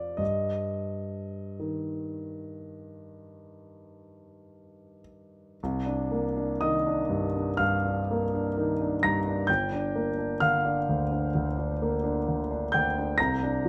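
Unhurried and rubato in 4/4, drifting between 43 and 67 BPM, this brief portion of a longer impressionist classical piece for solo piano sits in C minor with a mysterious, wistful mood. The concert grand sounds intimate and polished, up front with deep bass, long sustain and audible action noise, spanning G1 to Bb6 inside a moderate stone room reverb. The harmony moves from Eb/G into a second passage at 5.6 seconds on Cm11, passing through Gm7 before settling on C7sus2 at 13.2 seconds.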